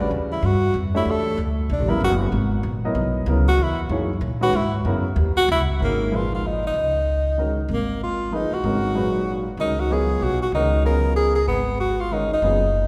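A mellow tenor saxophone takes a vibrato-laced jazz solo up front from the start, over a woody pizzicato upright bass and an intimate baby grand piano whose action noise is audible, in this cool, spiritual modal jazz piece swinging in three. The harmony moves through suspended ninth chords, and around 5.8 seconds the music shifts into a new section that the three players carry until the end. A lush concert-hall reverb surrounds the group, and the passage is cut from a longer performance.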